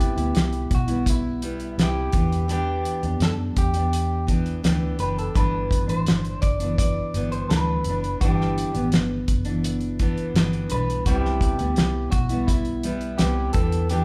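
From the first moment a dry 70s drum kit with a fat snare and tight kick, a round foam-muted fingered bass, a full-bodied jumbo steel-string acoustic guitar fingerpicked with a warbly pitch drift, and a slightly broken-up, compressed electric guitar melody through a small old amp all play together in this dreamy, hazy 14-second slice of indie and bedroom pop at 84 BPM, moving through Cmaj7, Em7 and G6 as a band recorded live in one room under a moderate large studio reverb.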